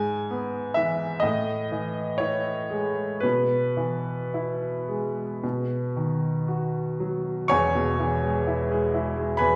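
Heard from further back in a recital hall with a wet, lingering reverb, this fragment of a tender, dreamy romantic nocturne features a brilliant, woody upright piano playing solo in E major at a rubato 54-66 BPM in 4/4, its long sustain carrying the harmony from E/G# through Amaj7, E/B and B before settling on E at 7.5 seconds.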